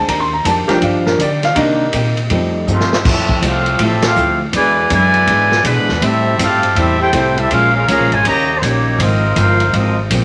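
Big band swing with a brassy, swinging mood, cut from a longer piece in 4/4 with a swung eighth-note feel. A concert grand piano with deep bass and a natural tone takes the opening solo, backed by woody pizzicato upright bass, a dark, clean hollow-body archtop guitar in the background, and a vintage kit with a punchy kick and rolled-off top. A saxophone section adds brief sustained ensemble chords with light vibrato. A drum fill at 2.7 seconds brings in the brass: a mellow, tight trumpet section carries the melody up front while a soft-attacked trombone section plays a second line behind it, and the full band hits an accent at 4.0 seconds. The harmony moves through rich seventh and ninth chords before settling on an Ab6/9, and a wet studio reverb and vinyl crackle give the recording an aged patina.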